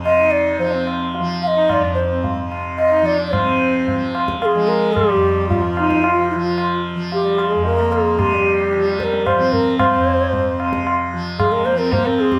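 An airy, hollow bansuri carries the melody up front, with vibrato and a crisp attack, over a buzzing, shimmering tanpura drone from the very start of this longing, introspective Hindustani classical passage in three. A low-tuned, ringing tabla joins at 0.1 seconds, and a rich bowed sarangi follows at 0.2 seconds as a close second line, gliding smoothly with light vibrato and the resonance of its sympathetic strings. The pace gradually speeds up as the band, playing live in one room with moderate studio reverb, moves into a new section at 3.3 seconds of this fragment cut from a longer performance.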